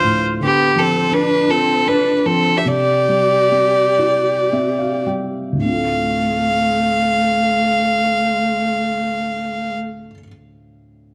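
A fiddle with an earthy tone and light vibrato sings the melody up front over a boxy, expressive viola second line with portamento and a felt-muted upright piano whose dark, intimate sound carries audible action noise. This longing, haunting Celtic slow air is in D dorian and 3/4, tuned to A4 = 436 Hz, with a rubato pulse between 52 and 85 BPM that slows early on while the piano adds a soft fill from 3.5 seconds. Both bowed strings stop at 9.8 seconds and the piano continues alone to 11.1 seconds, all in a moderate echo-chamber reverb with small-room ambience in this cut from a longer piece.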